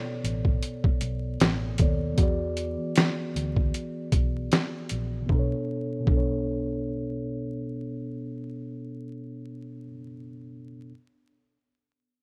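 Lo-fi hip hop with a hazy, melancholic mood, this short cut from a longer piece sways on a gentle sixteenth-note swing. A mellow tine electric piano carries the chords from start to finish, moving from Bm7 to E7 and back to Bm7, its clean, up-front tone softened by a low-pass filter. A vintage muted fingered electric bass sits underneath with a dark, round, punchy sound and plays until 9.9 seconds. The boom bap sampler-style kit is the loudest part, gritty and pitched down, with a thumpy kick, a medium-tuned snare and hi-hat, and it drops out at 6.3 seconds, leaving the keys and bass to carry on. The dry, rough home-demo mix is dusted with vinyl crackle.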